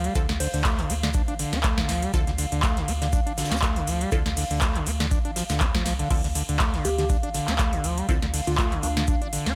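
A raw, trippy acid house excerpt in D minor at 121 BPM opens on a squelchy, distorted sawtooth acid bass riff with dub echo, a deep triangle sub bass with sidechain pumping, a booming analog drum machine up front with crisp snare, metallic hats, handclaps and crash and ride cymbals, and a warbling, nostalgic tape-like pad sustaining a D minor chord. From 0.2 s an overdriven electronic kick, a muted, phased dub chord stab with 12-bit sampler grit, and a very quiet, loose acoustic indie kit with fat snare, hi-hat and shaker join in, while a round, gentle FM lead with chorus and digital delay plays a brief phrase at 0.4 s and returns at 6.8 s. The mix is dry and close, with a light swing on the 16ths.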